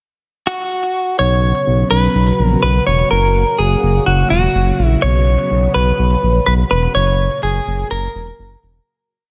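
Synth-pop at 125 BPM with a nostalgic, upbeat mood, where a clean, compressed, direct-recorded electric guitar picks a motif-based melody with digital delay from 0.5 seconds, then a dark, up-front sawtooth-and-square synth bass pulses in gliding eighth notes and a vintage string machine of cellos spreads a mellow, soft-attack pad with phaser and ensemble chorus from 1.2 seconds, all under light reverb across alternating Bsus2 and F# chords before the piece fades out from 7.0 seconds.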